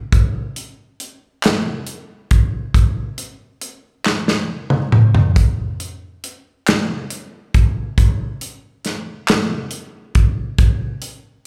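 Hopeful and soulful, this short gospel passage, cut from a longer piece, moves in 6/8 with a straight feel. A modern studio drum kit sits up front from 0.1 seconds, its punchy kick, medium-tuned snare, hi-hat and toms carrying an acoustic, studio-room character. Group handclaps join at 1.4 seconds, human and crisp, sitting in the background with a slapback echo trailing each clap until they stop at 9.7 seconds. A drum fill arrives between 4.1 and 5.4 seconds, breaking up the steady groove. The whole thing sounds like a live gig heard through the venue's PA, with light reverb and a small club room around it.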